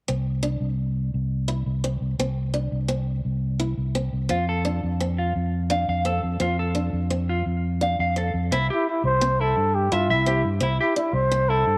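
A breathy, whispered trumpet with vibrato enters at 8.7 s to carry an intimate, jazz-style melody over a joyful 12/8 highlife groove, where a round, amped fingered electric bass sits up front beneath a bright, boxy parlour steel-string acoustic guitar's picked accompaniment, and a clean electric guitar with tape echo adds warm picked arpeggios from 4.3 s, all set in a small room with light reverb in this excerpt from a longer piece.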